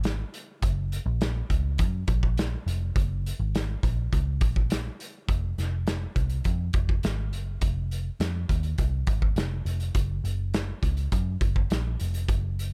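A dark, round, foam-muted picked electric bass with a punchy amped tone and a loose acoustic drum kit of hi-hat, tight kick and medium-tuned snare in a small, pumping room sit together up front in this wistful, hazy indie and bedroom pop fragment at 103 BPM in a straight 4/4, with little reverb and a new section arriving at 5.3 seconds.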